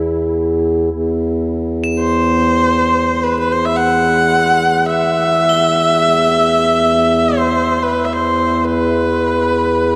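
A reedy, breathing harmonium drone on a low E opens this meditative world-music excerpt, sitting close and full at the front, while high crotales struck with brass mallets shimmer and ring softly in the background. The music floats in free time in E hirajoshi, with a spacious, haunting mood. At 2.0 seconds a single bowed viola enters up front with an intense, rich, biting tone, vibrato and an airy bow, carrying the melody between B4 and F#5. A diffuse ambient delay trails the viola's phrases. The whole piece sits in a long cathedral reverb with a dark, warm production, and the recording is cut from a longer work.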